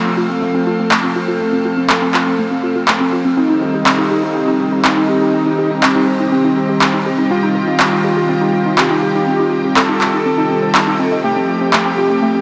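Overdriven electronic handclaps, up front and carrying the room's echo, mark a straight pulse from 0.9 to 11.8 seconds in this cinematic, melancholic melodic techno excerpt. Beneath them, a smooth, detuned analog pad holds sustained chords, while a mellow, woody wave-folded pluck spins filter-swept arpeggios through chorus, gritty sampler texture and diffuse delay. A blurred, evolving granular cloud pad drifts in the background, and from 3.4 seconds a thick, bright unison lead sings a vibrato-tinged melody, all within a dreamy mix soaked in huge reverb.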